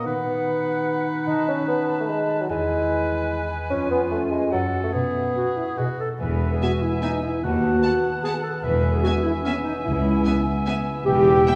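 In a straight 3/4 at 148 BPM in E major, this playful, mischievous film cue opens with clear solo clarinet and oboe, a mellow, roomy bassoon and a ringing harp weaving arpeggios, while a small, airy flute group adds a crisp upper line from 0.1 seconds. A punchy French horn section enters with sustained chords at 5.8 seconds, and from 6.2 seconds lush bowed cellos and soft-attack double basses anchor the bass. At 6.6 seconds a smooth, close violin melody arrives with a distant second violin line and a very quiet viola part sliding with portamento. The whole is bathed in a wet scoring-stage reverb, and the recording is cut from a longer piece.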